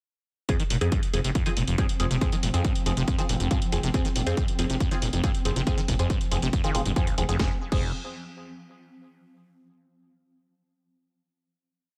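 A heavy, tape-warm electronic kick sits up front in a four-on-the-floor pulse at 139 BPM, driving this dark, intense peak-time techno piece in F minor alongside a techno kit with a cracking snare backbeat, closed and half-open hats and a crash. A gritty, saturated synth bass gallops in sixteenth notes beneath a squelchy, resonant acid line with accents, slides and filter sweeps, while muted, detuned dub chord stabs move one shape in parallel in a dotted rhythm through phaser and delay, with the bass and stab parts pumping against the kick. From 1.6 s a swarming, nasal granular drone hovers in the background with its own reverb, and the groove gives way at 7.4 s to a final F minor chord in a light digital ambience.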